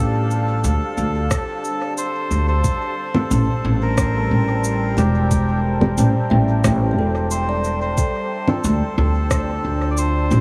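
Meditative and hazy, this ambient dub excerpt drifts over a deep, moody pad with chorus and a slow attack, while a reedy, nasal melodica carries the melody through dub echo and a woody kalimba rings arpeggios in the background. A bright, pizzicato upright bass sits up front, joined by tape-warm electronic cabasa, rim click and congas with studio reverb and echo, and a soft electronic kick from 1.3 seconds. An airy, wind-like noise texture ends at 2.7 seconds as the harmony moves from Dm7 to Am7, and a muted, very quiet filtered dub chord stab with phaser enters at 3.1 seconds.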